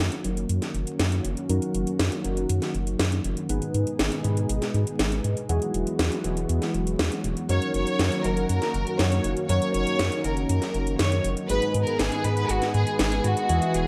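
From 7.5 s, a rich, bowed violin section carries the melody in this danceable, melodramatic italo disco excerpt at 120 BPM in 4/4 with a straight feel; its playing is smooth and even with vibrato, and a digital delay colors it. Up front, a round, deep analog bass adds tube saturation, its dark, wave-folded tone blending square, sine and triangle waves. A glossy, retro chorused polysynth plays stabs through a filter sweep with a cassette tape coloring, while a lush, detuned unison pad holds thick, warbling chords, also moving through a filter sweep. The house drum kit brings a cracking snare and metallic hi-hats, layered and re-recorded in a small room with gated reverb. The chords move from F#6 to G#m and Eadd9, then return to F#6 and G#m, and the mix carries light digital ambience and vinyl crackle.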